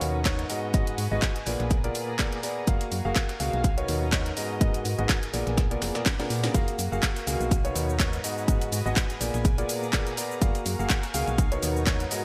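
An up-front grand piano riff with digital delay and sidechain pumping opens this feel-good, uplifting piano house clip at 124 BPM, riding a punchy, round, dark FM bass, a cracking-snare house drum kit with handclaps and cabasa, a very quiet gritty sampler-style soul kit with shaker and a fat snare, and reedy, gut-toned bowed strings in the background, before a tape-warm electronic kick enters at 0.3 s, all cycling through G#m7, A#7b9, F#maj9 and Bmaj9 with a 16th-note swing, a brief drum fill at 6.1 s, and a lush hall reverb over bright 1980s-style digital production.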